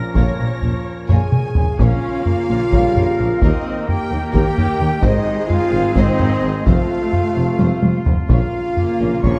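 Heroic and dramatic, this epic orchestral film-score excerpt in Bb dorian drives along in 7/8 at 257 BPM. Up-front taiko drums with heavy sticks land fills at 1.1 and 7.6 seconds beneath a lush bowed violin melody, a second violin line and airy flutes from 1.1 seconds. Violas supply accompaniment as a distant woodwind section, very quiet punchy trombones and prominent French horns hold sustained chords, while a mellow tuba, very quiet cellos and a dark double bass section anchor the bass through Bbm, Eb, Ab and F in a moderate scoring-stage reverb.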